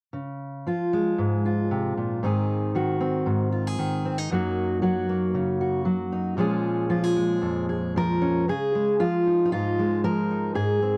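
A fingerpicked steel-string dreadnought acoustic guitar plays alone from the first moment, a pastoral, gentle folk piece at 115 BPM in 4/4 with a straight feel, in Db major. Sitting up front in a dry, close 1970s-style studio sound, its tone is warm as the harmony moves through Db, Ab, Gb6 and Bbm7 before settling on a Dbadd9 at 8.5 seconds. This brief passage, cut from a longer piece, ends at 11.0 seconds.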